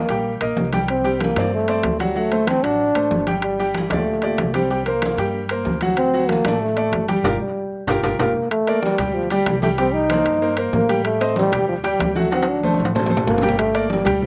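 A mellow trombone carries the melody from the very start, up front with a slapback echo, its punchy, vibrato-laden lines full of scooped notes and a smooth top in a pop-style solo. It is joined at once by a clear concert grand piano in accompaniment, also up front, with deep bass, a slightly boxy tone and short sustain, and by a pizzicato upright bass whose woody, thumpy steel strings sit dark and low beneath. This is a danceable, driving salsa excerpt in G minor at 189 BPM in a straight 4/4, cut from a longer piece. Ringing metal-shell timbales, close and dry, and bright congas with thin, medium-tuned skins played with soft hands, heard distant as if in a large room, fill out the percussion. A band accent and drum fill around 7.2 to 8.5 seconds lead into a second section over chords moving through Gm, Cm7, Am7b5 and D7, with another drum fill at 12.3 seconds before the close on Gm. The recording has little reverb, an open-air quality and a faint mains hum.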